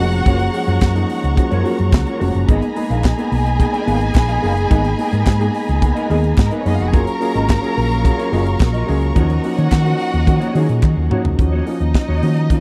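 A dry, close 1970s-style studio sound frames this sultry, danceable disco cut at 108 BPM in Eb minor, where a tight funk drum kit with a high-tuned snare and a round, hollow-body fingered electric bass sit up front beneath a worn, intimate grand piano with audible action noise, a clean electric guitar with ensemble chorus in the background, a lush violin section carrying a second line through tape echo, sustained portamento string chords that stop at 11.4 seconds, and very quiet, crisp handclaps, with a drum fill arriving at 10.8 seconds.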